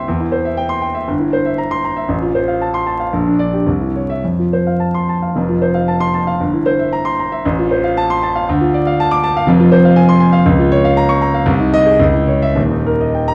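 In a rubato 2/4 pulse at 104-122 BPM, this brilliant, heroic classical virtuoso piano study in F major, a fragment cut from a longer piece, features a solo concert grand with deep bass, an open tone and short sustain, placed up front and spanning Eb1 to D6 within a wet recital hall reverb, dark production and vinyl crackle, as a new section begins at 5.4 s and the harmony turns toward minor and flat-key chords from 9.5 s, landing on Eb at 12.6 s.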